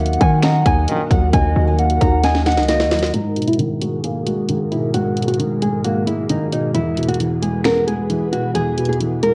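This dark, menacing trap-flavoured hip hop piece moves at 133 BPM in a half-time 4/4 feel, set in G# minor with tuning slightly below standard pitch. A felt-muted upright piano sits up front with audible action noise and a thick, mellow, vintage tone. An airy, detuned pad holds sustained chords in the background, and a thumb-plucked nylon-string guitar carries the melody in a warm, small voice. At the start, over a D#m chord, a hollow, woody clarinet-like synth lead with vibrato adds a second line, a punchy sine 808 bass hits heavy and decaying, and a dark brass section lands one brief stab at 0.9 seconds. Over a hard-clipped kick, sharp snare, hi-hats and finger snaps, the drums play a fill from 2.2 seconds before the lead and 808 drop out at 3.1 seconds, when a filter sweep opens the second section as the harmony moves to G#madd9 and then E. The whole excerpt carries a worn, warbling cassette-tape drift with a light small-room ambience.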